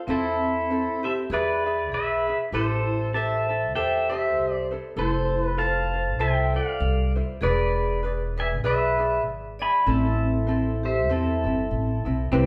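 Sunny and dreamy, this Hawaiian piece in A minor sways at 98 BPM with a gentle swing on the eighth notes, moving through chords from Am to Fmaj7 and E7 before settling back on Am. Up front, a bright, twangy electric pedal steel carries the melody with fingerpicks, slide and volume swells over a compressed, clean tone, while a metallic, ringing vibraphone struck with medium hard mallets and a medium motor vibrato adds a second line. A light, fingerpicked acoustic ukulele plays underneath, and a woody pizzicato upright bass with steel strings sits prominently, the whole band playing live together in a stone room with a wet reverb.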